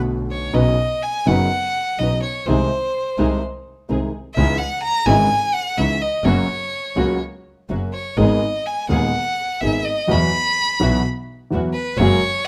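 A light reverb gives this brief tango passage a sultry, melancholic air, with the music moving in a supple rubato that feels cut from a longer piece. A dark, mellow baby grand piano sits up front in the accompaniment, its vintage tone and short sustain carrying the harmony through chords such as Badd9, C#madd9 and Esus2. Beneath it, a bowed double bass plays sul tasto with a soft attack, light vibrato and an airy, intimate closeness. The violin enters at 0.3 seconds and takes the solo from 0.5 seconds, its biting, intense tone placed forward with vibrato and a breathy bow. Behind everything else, a symphonic string section adds woody, lush stabs with a smooth top, staying in the background until 12.2 seconds, while the violin carries on to 12.5 seconds.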